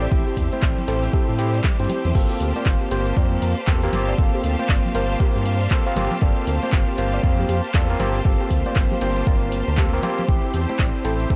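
Deep house at 118 BPM in G dorian with a swung 16th-note feel, this deep, hypnotic excerpt moves from Am7 to a long Gm11 over a dry mix, led by an up-front deep electronic kick from 0.1 s and a dark, round analog bass with tube saturation, while a gritty, overdriven tine electric piano stabs through a combo amp with digital delay, a mellow detuned analog pad and a soft, full-bodied pluck arpeggio with delay sit in the background, a lush, bright bowed string section with vibrato adds texture, a small-room-treated drum kit supplies cabasa, crash cymbal, handclaps and hi-hat, close soft-handed congas enter at 0.5 s, a very quiet electronic swell appears at 1.7 s, and sidechain pumping breathes through the pad, pluck, piano, bass, strings and congas.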